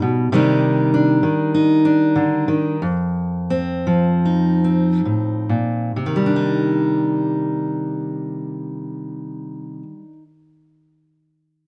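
A fingerpicked steel-string acoustic guitar with fresh strings, audible finger squeak and an up-front presence carries this wistful, reflective solo folk fragment in a loose rubato, easing and slowing over its first 6.0 seconds as it moves from Cmadd9 to F and back, set in a moderate studio ambience with a soft, rounded top end.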